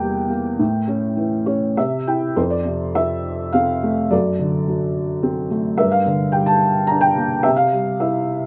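Warm and hopeful, this short excerpt from a longer classical piece features a lyrical solo piano in F major, moving in 3/4 at roughly 99-109 BPM with a flexible, rubato feel. A felt-muted upright piano carries everything from start to finish, its tone soft, mellow and intimate, with a dark, boxy character that sits up front. Close, detailed microphones capture the instrument with light reverb, keeping the sound near and personal. Around 1.2 seconds the piano adds a brief fill that leads into a new passage at 2.4 seconds, where the harmony settles on F before passing through D7/F#, G minor and C. The opening moments drift through E diminished, A and C, giving the phrase a searching quality before it resolves into the home key.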